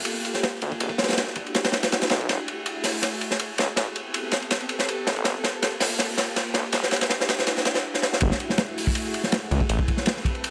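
A crunchy breakbeat kit drives this raw, frenetic drum and bass and jungle excerpt in a straight four, its hi-hat, kick, snare and ride sitting up front with a gritty, saturated, small-room character, a punchy kick, dark cymbals and a rolled-off top. The section is a build-up, with a long drum fill running from 2.3 seconds, before the drop arrives at 8.2 seconds. From 0.6 seconds a detuned saw bass joins underneath, thick and menacing, its beating, sustained tone carrying saturation. Floating softly in the background, a vintage string machine holds silky, warbling chords through an ensemble chorus, with slow attacks and long, mellow releases. The harmony cycles through minor ninth chords, and a light reverb ties the parts together in a fragment cut from a longer piece.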